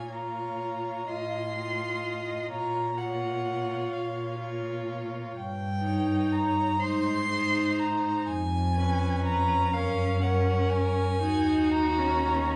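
Heard in a moderate recital hall reverb, this solemn, elegiac excerpt from a slow romantic string quartet movement in 6/8 moves with a rubato feel: a warm, up-front violin sings the melody with vibrato and portamento, a clear, distant second violin traces a focused line beneath it, a smooth, even viola fills out the accompaniment, and an expressive cello with a soft attack and rich tone anchors the bass, all four playing throughout the 12.6 seconds.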